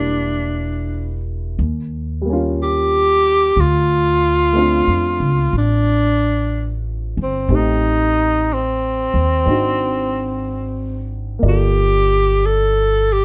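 Dry and close, this tender, late-night jazz ballad moves at a slow 61 BPM in 4/4 with a gentle swing on the eighth notes, cut from a longer piece. An up-front tenor saxophone carries the melody with a warm tone, vibrato, soft attacks, scooped notes and a smooth top, while a mellow, dark baby grand piano sits lower in the mix as accompaniment and a woody, thumpy pizzicato upright bass anchors the bottom. All three play throughout the 13.2 seconds over rich chords such as Em7b5, Eb9, Dm7, Ab7#11 and Gm9.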